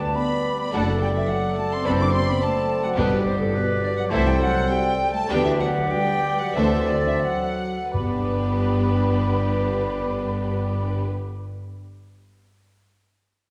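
Lively and spirited, this quick classical-period movement for symphony orchestra sits in G major and moves with a rubato feel between 84 and 107 BPM, easing back from 1.8 to 7.9 seconds. A chamber violin section carries the melody with light vibrato and a soft, sul tasto touch, joined at 0.7 seconds by a lush studio violin section in the background whose portamento adds expressive glide. A mellow, hollow silver flute, a clear oboe and a distant clarinet trace second lines beside them, while a dark bassoon and a rich, focused viola section fill in the accompaniment. A dark French horn section holds sustained chords, and below it a close, intimate cello section and a clear, bowed double bass section anchor the bass. Very quiet timpani with hard mallets taps briefly at 3.0 seconds and returns at 7.9 seconds as the harmony settles back on G, all heard from further back in a reverberant scoring stage in a passage cut from a longer piece.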